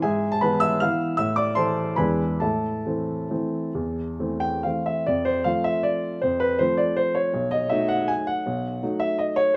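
Wistful and elegant, this brief classical piano waltz in A minor, cut from a longer piece, sways in 3/4 with a rubato feel between 132 and 172 BPM, as a solo upright piano with a woody, open, up-front tone ranges from B1 to F6, moving from E/G# through Am and E7 before shifting to F at 5.1 seconds and B7 at 7.3 seconds, all captured by close, detailed microphones in a moderate recital hall reverb and tuned to A4 = 436 Hz.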